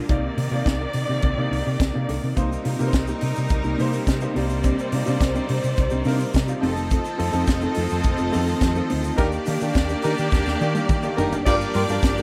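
A sultry, danceable disco groove opens with a clear baby grand piano, a mellow electric guitar with analog chorus and a lush studio string section holding sustained chords over a C minor ninth harmony. A tight funk drum kit with a high-tuned snare and tight kick sits up front alongside a round, punchy hollow-body bass, with piano and guitar tucked into the background. At 2.4 seconds a smooth symphonic string section adds a second line with light vibrato, and a grainy, vintage tube shaker joins quietly behind the band. The harmony moves through minor seventh and dominant chords before a warm horn section enters with pop-style stabs at 9.2 seconds, during a full-band accent, and the drums then add a fill. The dry, close sound keeps the groove intimate, and this cut from a longer piece stops on a G minor seventh chord.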